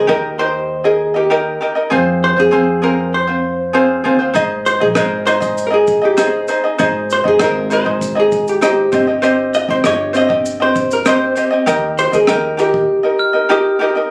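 A dark, clean hollow-body jazz guitar picks the melody up front in this sunny, easy-going acoustic pop excerpt, over a bright fingerpicked ukulele and a woody pizzicato upright bass, with a compact cocktail drum kit of punchy kick, rim click and shaker entering at 4.4 seconds and a bell-like glockenspiel played with soft plastic mallets ringing in at 13.2 seconds, the whole captured on a phone in the room and set in light reverb.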